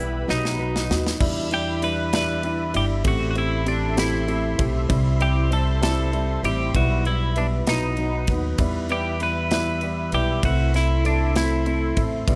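A melancholic, aching six-eight pop ballad in E minor at 65 BPM opens with a bright, twangy twelve-string electric guitar melody over dark, mellow upright piano, a woody pizzicato upright bass up front, an evolving sawtooth pad with chorus in the background, and a very quiet, boxy picked acoustic guitar arpeggio that stops at 1.2 seconds, as a polished studio drum kit with a punchy kick enters at 0.3 seconds with a fill before settling into a lightly reverberant flow through Em7, Am7 and C toward a closing C6.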